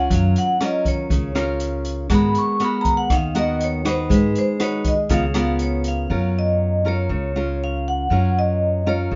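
A straight 4/4 bossa nova groove sets a wistful, melancholic mood in this cut from a longer piece, with an open jazz kit of hi-hat, boomy kick and rim click playing from 0.1 to 6.0 s. A bright, ringing vibraphone with medium-hard mallets and motor vibrato takes a solo through 6.1 s, over up-front fingerpicked classical nylon-string guitar and a woody, thumpy pizzicato upright bass moving through chords such as Gbmaj7 and Abm9. The band sounds as if it is playing live in one room, with moderate studio reverb and a top end rolled off above 7.5 kHz.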